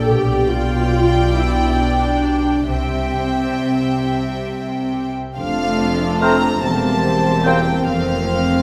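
Lyrical and tender, this slow, rubato romantic orchestral passage in 6/8 and F major, cut from a longer piece, opens with floating sul tasto violins carrying the melody and a second line over dark, lush violas, ringing harp arpeggios, and pure, distant cellos with rich double basses, before a French horn section adds sustained chords at 5.4 seconds and, at 6.2 seconds, a hollow flute, clear clarinet and oboe trace second lines above a very quiet mellow bassoon, all bathed in the wet reverb of a church or concert hall.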